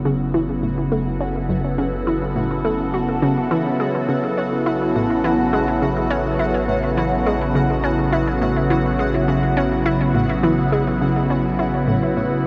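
A swirling, phased analog pad sits up front holding sustained chords from F#m to A in this expansive, hypnotic piece of sequencer-driven ambient space music at 104 BPM, alongside a nasal, detuned analog pluck riff with chorus and delay, a deep, dark round analog bass, and a pulsing, tempo-synced gated texture that fades in across the 12.5 seconds, all bathed in a huge wet reverb and the warbly pitch drift of worn cassette tape.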